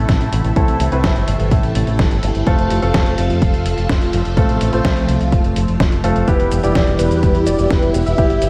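A steady, straight 4/4 pulse at 126 BPM drives this danceable, bittersweet italo disco fragment in A minor, where a punchy, overdriven electronic kick and a gritty, compressed sampler-style kit of cabasa, hi-hat and snare sit under a round, up-front fingered bass with an envelope filter, swirling phased string-machine chords with ensemble chorus, and clear grand piano stabs through analog delay, all moving from Am to F to Em, until a thick, detuned unison lead with vibrato and diffuse ambient delay enters at 6.3 s in a dreamy mix soaked in hall reverb.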